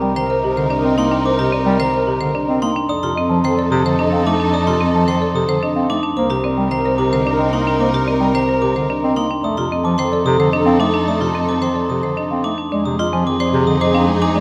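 Heard in a wet recital hall, this hypnotic, meditative minimalist classical pattern piece in 3/4 at 110 BPM, cut from a longer work, sets a round, rustic soft-mallet folk marimba melody over an airy, vibrato-tinged alto flute line in the background, a smooth bass clarinet accompaniment, lush bowed violin chords and an expressive cello bass with portamento, while a percussive hard-mallet padauk marimba and a sparkling, bell-like glockenspiel, entering at 0.2 seconds, trace arpeggios through Cm7 and F7 before a turn to Fm7 at 12.7 seconds.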